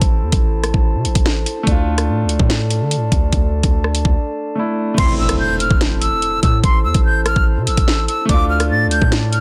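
Up-front drill drums with a knocking kick, sharp snare, metallic hats and gritty, tape-warm sampler crunch drive this dark, tense hip hop drill excerpt at 145 BPM in a half-time feel in A minor, over a punchy, heavy 808-style bass, clear grand piano accompaniment and ethereal, glassy harmonica chords, with a break at 4.2 seconds before an airy, expressive jazz flute melody with vibrato and delay enters at 5.0 seconds alongside a background electronic impact, all in a dense, heavily limited modern master.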